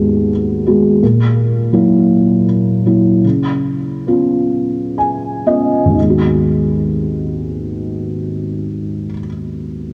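In a straight 6/8 lilt counted in dotted quarters at 38-57 BPM, slowing down between 1.0 and 6.0 seconds, this heartbroken, intimate folk fragment in G# minor, cut from a longer piece, features a lone felt-muted upright piano, dark and boxy with thick felt and audible action noise, sitting up front through cassette tape coloration and a moderate spring reverb in a home recording as it moves from G#m7 through F#7/A# and C#7 before returning to G#m7 at 6.0 seconds.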